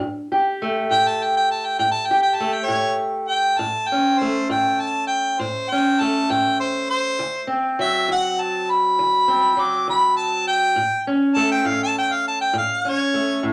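Acoustic country blues in a rollicking, gritty 12/8 feel, heard here as a short cut from a longer piece. A fingerpicked parlour steel-string guitar with old strings gives a dark, woody, boxy accompaniment from the start, and at 0.9 seconds a clear harmonica enters up front with a jazz-style solo full of scooped notes and light vibrato. The pair move from A7 to D7 and back to A, set in a wet studio reverb.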